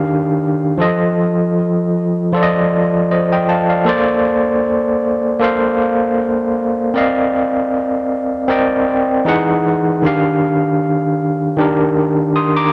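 Soul in Bb major at a relaxed 78 BPM in 4/4, this short excerpt carries a smooth, warm mood with a gentle swing on the sixteenths. A lone overdriven tine electric piano plays the whole 12.7 seconds, spanning Eb3 to Eb6 and sitting up front in the mix. Its tone is bright and barky with a gritty edge from a combo amp, colored by fast tremolo and tape echo. The harmony moves through lush extended chords, from Ebmaj9 and F7 to Bbmaj9 and Cm11, with a brief turn to Emaj9 before settling back on Ebmaj9 at 10.0 seconds. Light reverb and a digital ambience give the piano a touch of space around it.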